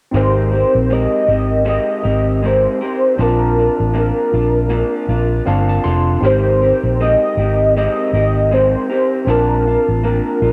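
Hazy and sunny, this short indie pop passage, cut from a longer piece, moves at an unhurried pace with a gentle swing and a soft cassette-tape grain over a home-recorded feel. A warm, velvety synth lead carries the melody, its detuned sawtooth and triangle tones smoothed by analog chorus and held in sustained notes. Beneath it, an electric guitar through a small old amp adds a slightly broken-up, compressed, lo-fi accompaniment bathed in lush chorus and vibrato, while a bright, barky tine electric piano stays in the background and steps forward with a short fill from 5.1 to 6.2 seconds. A dark, round, foam-muted fingered electric bass sits punchy and up front, anchoring the dreamy harmony as it shifts between Abmaj9 and Bbmaj7. Moderate spring reverb wraps the parts in a soft, nostalgic glow.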